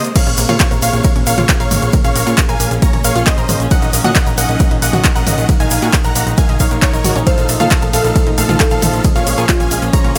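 Uplifting trance at 135 BPM in Bb minor, driving and emotional, cut from a longer piece: a huge, euphoric supersaw lead carries the melody with digital delay over a nasal analog pluck second line and a round, detuned pluck arpeggio, both with chorus and dub echo, while earthy chamber strings hold sustained chords, an overdriven, up-front kick pushes the drop from 0.2 s, joined by a plucky, funky analog bass at 0.3 s, a dry, overdriven analog drum machine adds hi-hat, handclaps, toms, ride and crash with a grainy egg shaker, a soft, felt-muted upright piano with audible action noise slips in at 7.3 s, and the harmony moves from Bbmadd9 through Ebm7 and F7/Bb to Db/Bb, with sidechain pumping on most parts in a dry mix.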